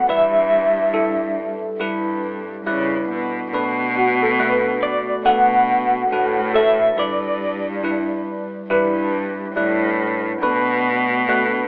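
A heartbroken, melancholic folk piece opens on a slightly broken-up, lo-fi electric guitar carrying the melody through tremolo, alongside a bell-like tine electric piano with a phaser and a close, bowed cello with smooth vibrato holding the bass under slow alternating G6 and Bm7 chords. At 4.0 s a felt-muted upright piano adds soft arpeggios in the background, its action noise audible, and the guitar drops out at 8.7 s. The band sounds as though playing live in one room under a moderate reverb, all filtered through a telephone tone.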